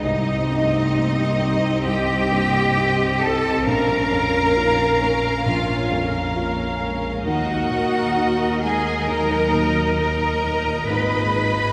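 A slow, rubato pulse of 66 BPM in 4/4 carries this moving, bittersweet cinematic film cue for orchestra, a fragment cut from a longer piece. A lush, distant violin section sings the melody, while a second violin section with a smooth top and a hollow, airy flute group, very quiet and straight-toned, trace a second line. Up front, a rich cello section carries the bass with bowed vibrato alongside a chamber double bass section, while a viola section and soft-attack French horns provide accompaniment and sustained chords in the background. A felt-muted upright piano adds intimate support, and a very quiet concert harp rings out thumb-plucked arpeggios. The harmony moves through Cm, Bbm, Ebm and Abm, and a generous church reverb surrounds the ensemble across its 11.7 seconds.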